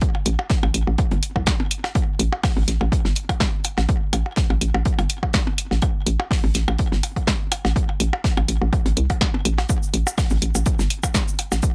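An overdriven electronic kick and a dry, damped 70s drum kit with a fat snare and filtered hi-hats open this quirky, clinical minimal techno cut from a longer piece, running at 124 BPM in 4/4 with a light 16th-note swing in A minor. Tape-warm percussion blips and claves with digital delay join almost at once, followed by a hollow, bouncy FM bass that knocks with a fast attack and pumps with sidechain compression, alongside an up-front analog drum machine with a punchy snare and hi-hat. A grainy, close tube shaker enters at 9.7 seconds, and the whole mix stays tight and dry, with little reverb.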